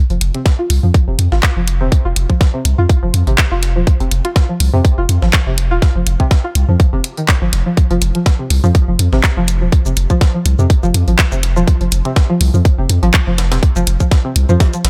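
Minimal techno at 123 BPM in 4/4 with a light 16th-note swing, this short cut from a longer piece sits in F minor and feels clinical and quirky, resting on an F5 chord throughout. A tight, up-front electronic kick drum anchors the groove from 0.5 seconds, while a deep, punchy sine sub bass with a pitch-drop attack and sidechain pumping carries the low end from the start. Over it, a bright, twangy string-like resonator pluck plays a riff with a sawtooth edge and noise layer, treated with subtle chorus, tape echo and sidechain pumping. The percussion is layered from two kits: a produced garage kit supplies handclaps, hi-hat and shaker up front, while a gritty, pitched-up breakbeat sampler kit adds compressed, high-passed hats and a medium-tuned snare with a tape-warm, small-room character. A digital ambience surrounds the mix, keeping the sound sleek and precise.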